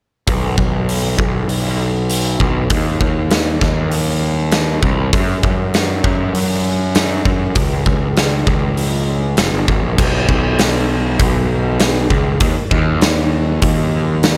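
A fuzzed, picked electric bass and a big acoustic rock drum kit come in together at 0.3 seconds, setting an angsty, brooding tone for this quiet-loud alternative rock clip in straight 4/4. The bass sits up front with a bright, growly, overdriven edge, played direct and amped across a low range. The drums are also up front, with a punchy kick, a medium-tuned snare, hi-hat and crash cymbal, all set in a big, pumping room. At 10.0 seconds the music moves into a new section, and both parts carry on to the end at 14.4 seconds. A light reverb adds a touch of space to the mix.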